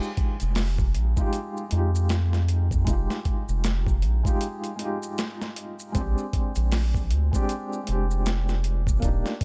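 A swung 16th-note groove at 78 BPM in 4/4 drives this melancholic, cinematic trip hop excerpt in F dorian, built on a gritty, overdriven sampler-style drum kit with a thumpy kick, medium-tuned snare and hi-hat sitting up front, with close, dry maracas beside it. A deep, round analog bass enters at 0.4 seconds with a fast attack and sustained notes. A soft, intimate felt-muted upright piano carries the harmony from Fm9 to Bb13 at 6.0 seconds, colored by tremolo, vintage 12-bit sampler grit and tape echo in a dry, close space.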